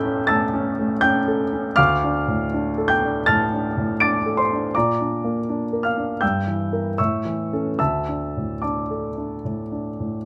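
An intimate, up-front grand piano with audible action noise carries this bittersweet, stormy romantic character piece in D minor, played with rubato at 71-82 BPM in 4/4 across a span from D2 to D7, its natural tone set in light reverb as the harmony moves from A through Dm, Bb and Edim/G and back to A before settling on D5 at 7.8 seconds in this 10.3-second passage cut from a longer work.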